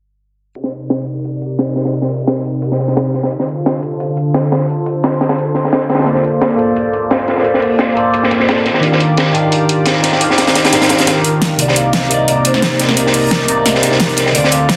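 Rolling and soulful, this liquid drum and bass excerpt at 174 BPM in C dorian opens with a lush, detuned sawtooth unison pad holding chorused chords under a filter sweep, over a crunchy, dark breakbeat kit with a high-tuned snare and a layered electronic pop kit with a fat snare and metallic, overdriven hats. A barky tine electric piano through a combo amp, with phaser and digital delay, enters at 6.0 seconds over chords moving from Cm9 through Bbmaj9 and Ebmaj9. A ringing vibraphone with fast motor vibrato and dub echo arrives at 11.2 seconds, and a drum fill then leads into a build-up where a deep sine-and-triangle sub bass with octave follows at 11.6 seconds, all in a small room with a dense, heavily limited master.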